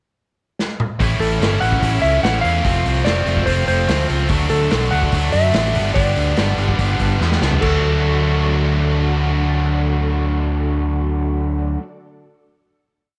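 An up-front, overdriven fingered electric bass drives this short, swaggering and sunny classic rock piece in D major at 145 BPM, pushing steady eighth notes under a bright, double-tracked distorted electric guitar that hammers out picked barre-chord riffs. A vintage drum kit opens with a fill at 0.6 s and settles into a big rock groove, its punchy kick, medium-tuned snare and dark cymbals heard in a small, pumping room with a rolled-off top. Over this, a clean lap steel guitar plays a slide melody built from short, song-like motifs with a warm, fingered tone. Deep in the background, a vintage string machine with cellos holds mellow sawtooth chords with a slow attack, swelling and shifting inversions through a phaser and ensemble chorus. After a pre-chorus that moves through A, F, D and G, the band lands on a final D chord at 7.6 s, the drums stop at 7.7 s, and the other parts ring on in light reverb.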